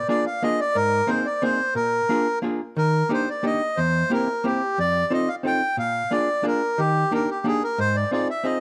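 A whirling, bittersweet musette in 3/4, cut from a longer piece, sets a reedy, close-miked single-reed accordion with dry tuning and a touch of plate reverb up front on the melody over a clean, picked, hollow-body electric archtop guitar accompaniment moving through chords such as Bb7, Abadd9 and Ebmaj7, all in a moderate studio room with a dark, warm production.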